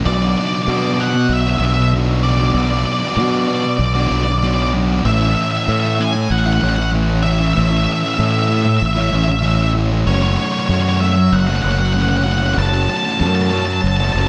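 Post-rock in a straight 4/4, this short excerpt from a longer piece feels soaring and euphoric. A thick, double-tracked fuzz guitar drives the riff from the very start, picked and distorted, sitting up front across a low-to-middle range. An octave-fuzz lead guitar carries the melody high above it, its dark, distorted tone trailed by digital delay. Underneath, a fingered electric bass played through overdrive adds a growly, amped fuzz that is the most prominent part in the mix. The harmony moves from Bm to A at 5.1 seconds and on to F#m at 10.1 seconds, and a lush hall reverb gives the whole a big arena sound.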